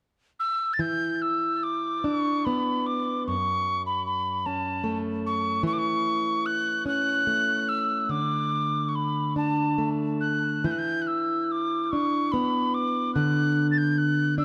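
Celtic slow air in a rubato 6/8, longing and mournful, where an airy wooden whistle with soft attack and vibrato carries the melody through a tape echo from 0.4 seconds, joined at 0.8 seconds by a full-bodied fingerpicked jumbo steel-string guitar with fresh strings, both heard up front under light reverb in this cut from a longer piece.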